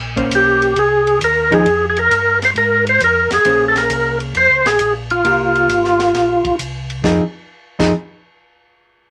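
Smoky and late-night, this soul jazz organ trio cut swings at 134 BPM in F minor. A mellow, round tonewheel organ carries the bass line through a slow rotary speaker, while a dark, clean hollow-body jazz guitar comps and a compact cocktail kit adds dry, dark cymbals, a high-tuned snare and a punchy kick. Up front, a fat, lightly overdriven percussive organ with key click and chorus vibrato takes the melody from 0.4 to 6.6 seconds over Bbm9, Fm and C7sus4 chords, all in a moderate studio ambience.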